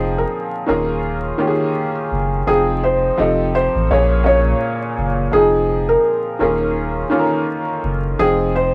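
An 84 BPM hip hop groove in 4/4 swings its sixteenths gently, setting a hazy, melancholic mood in F minor across this 8.7-second cut from a longer piece. A felt-muted upright piano carries the melody between Ab4 and Eb5, its soft, mellow tone intimate and close, with short sustain and audible action noise from the thin felt, dulled further by a low-pass filter and cassette tape. Alongside it, a bright upright piano plays the accompaniment up front from Bb2 to G5, sounding brilliant yet worn, woody and slightly detuned, softened by tape and filtering and opened out with plate reverb. A deep, full sub bass with octave, built from sine and triangle tones with a fast attack and sustained notes, anchors the low end between Eb1 and Bb1. The harmony circles from Fm7 through Eb9sus4, F7 and Bbm7 before settling back on Fm7 at 8.2 seconds, all inside a damp booth ambience with the crackle of vinyl and the grain of a home cassette recording.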